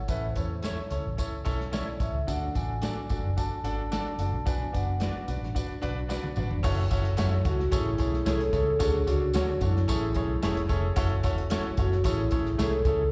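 Warm and uplifting, this short cut from a longer 1960s-style soul piece moves at an uptempo 110 BPM in A major. A mellow, ringing soft-mallet vibraphone carries the melody with slapback echo over a round, punchy foam-muted fingered electric bass, a clear, intimate baby grand piano with audible action noise and its own slapback, and a small-room soul drum kit with dark cymbals and a punchy kick. A jingly tambourine adds percussion, and slightly broken-up, lo-fi electric guitar stabs with slapback echo sit in the background. A drum fill at 6.1 seconds turns the A, D and Bm changes toward F#m7, Amaj7 and Dmaj7 colours, all heard as a live gig through the venue's PA in recital hall reverb.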